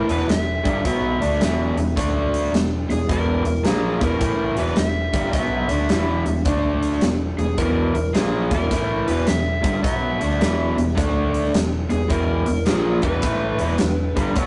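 Blues rock power trio with a southern rock lean, this driving, gritty groove swings at 106 BPM in 4/4 as an up-front, bright, double-tracked picked garage guitar riff works between E5 and D5 chords, an overdriven slide guitar carries a warm melody above it, a dark, round foam-muted fingered bass anchors the low end, and an arena drum kit with a punchy kick, a fat snare and a pumping hall sound enters at 0.1 s, all caught in a rough, saturated rehearsal-room recording with a short, wet room reverb and a dulled top end.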